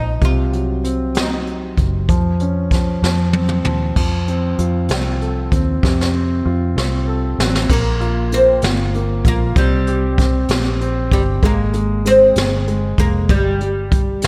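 Dramatic and melancholic, this six-eight pop ballad moves at a slow 64 BPM with a straight feel, heard as a fragment of a longer piece. A bright, woody oud carries the melody with plectrum-plucked double strings and a deep fretless tone, dropping out at 3.3 seconds and returning at 7.4 seconds. Beneath it, a concert grand piano with a warm, open character and deep bass sits up front with a slapback echo. A vintage fingered electric bass adds a round, foam-muted, amped sound with punch. A jazz kit played with brushes offers dark cymbals, a high-tuned snare and a punchy kick, smooth and rolled-off on top, with fills that lead into the middle stretch and into the final passage. The harmony moves through chords such as Cdim, F and Abadd9 before ending unaccompanied by chords, all set in light reverb and a small room ambience.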